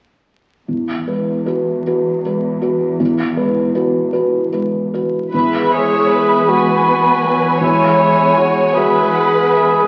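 Tender and uplifting, this short cut from a longer cinematic film score unfolds in 6/8 at a slow 53 BPM in E major, moving with a free, rubato feel. A felt-muted upright piano opens at 0.7 seconds on an Eadd9 chord, its soft, mellow tone intimate and up front, with the thick felt and audible action noise giving it a vintage character. A lush cello section holds a low E beneath it, bowed with vibrato and portamento. At 5.3 seconds the music opens out as the violin sections enter, one carrying a high, smooth melody and the other an expressive, up-front second line, while a distant viola section adds quiet support in the background. Moments later a dark, close-miked cor anglais joins as a solo voice in classical style, adding its own melodic line in a lower register. The whole is bathed in a recital hall's reverb and heard through the crackle of a very old 78 rpm record, lending it a nostalgic, faded glow.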